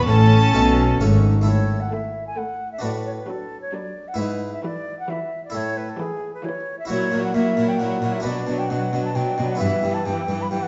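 A brilliant, Italian-style harpsichord with octave strings carries the accompaniment in this lively, festive baroque-style concerto movement with solo episodes, moving at 132 BPM in a straight 3/4. Above it, an airy, mellow concert flute with a straight tone and soft attack sings the melody from a distant position. A very quiet, focused violin section also carries the melody, while a second violin section sits in the background on a second line. A distant, expressive viola section adds bowed accompaniment, and a smooth, even cello section holds the bass throughout, joined by a double bass section only until 1.5 seconds. The harmony starts in A major and turns toward B minor from 6.9 seconds, all set in a wet recital hall reverb with a softened top end, in a short cut from a longer piece.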